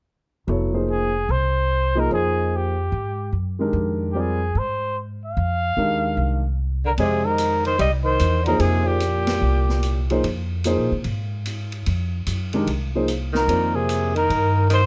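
Hypnotic and cool, this modal jazz passage in F dorian swings at 148 BPM in 4/4, cut from a longer piece and framed in a dark production with light reverb. A concert grand piano with deep bass holds the accompaniment up front, resting on a long Fm11 before moving to Cm7 near the end, while a woody, thumpy upright bass played pizzicato on gut strings anchors the low end from the start. A vintage-toned trumpet carries the solo melody from 0.9 seconds, its vibrato singing between G4 and F5. A breathy tenor saxophone with scooped notes joins at 6.9 seconds as a low second line beneath the trumpet. The open acoustic drum kit enters at 7.0 seconds with hi-hat, ride and a medium-tuned snare, its dark cymbals sitting quietly in a natural studio room as the horns return together for the closing moments.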